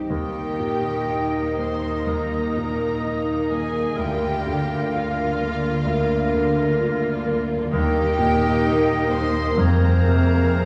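A clear, up-front grand piano with a vintage, short-sustained tone carries the melody in this passionate, tragic classical fragment, moving with rubato freedom over a lush bed of bowed strings: a distant violin section sings high above, a second violin line sits in the background, and violas, cellos and double basses fill out the accompaniment and bass with smooth vibrato. Woodwinds add quiet second lines, from a pure, crisp concert flute high up to a mellow, roomy cor anglais solo and a very quiet bright clarinet, while a dark, distant French horn section holds soft sustained chords. The harmony moves from Eb to Bb/D at 4.0 seconds and reaches Fm at 9.6 seconds, all set back in a wet concert hall reverb with a faint vinyl crackle.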